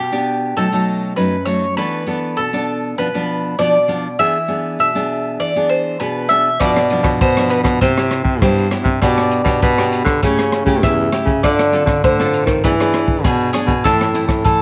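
A warm baritone saxophone takes the bass role from 6.6 seconds, playing in a jazz style with vibrato, subtone and scooped notes that sit up front in this joyful, festive blend of samba and choro. Before it arrives, a bright bowl-back mandolin with picked double strings carries the second line over a deep, classical-toned nylon-string guitar that is fingerpicked in accompaniment. An acoustic jazz drum kit enters alongside the saxophone, with hi-hat, rim clicks and a boomy kick that give it a dark, smooth sound in a small room. The harmony moves through passing chords such as Bdim, A7/C# and Dm7 before settling on Am, in a straight four-beat feel. A moderate spring reverb lends the mix a gentle sheen, and the recording is cut from a longer piece.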